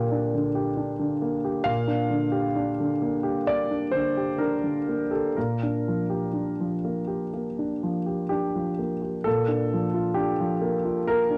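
A warm, intimate concert grand piano plays alone and up front, its deep bass and audible action noise giving a natural, close feel to this peaceful, tender neoclassical minimalist excerpt in a loose rubato, moving from Gm/Bb to Bb6 at 5.4 seconds within a moderate studio ambience captured as a home recording on cassette, cut from a longer piece.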